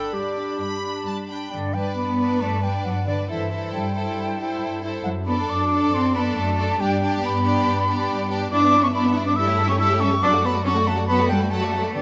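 In a quick 4/4 at 138 BPM with a rubato feel, this cheerful, graceful classical-period movement for symphony orchestra opens in G major and moves to D major at 8.5 seconds. A lush first violin section carries the melody from a distance, sitting in the background. A focused, close second violin section plays its own line alongside it. A clear, up-front solo clarinet briefly shapes a second line until 1.3 seconds, and a pure concert flute with a soft attack takes over that role from 1.5 seconds, singing expressively above the strings. Smooth, even violas fill in the accompaniment, while rich cellos and bowed double basses anchor the bass, all the strings carrying vibrato. A moderate concert hall reverb gives the ensemble a graceful sense of space, and the passage is cut from a longer piece.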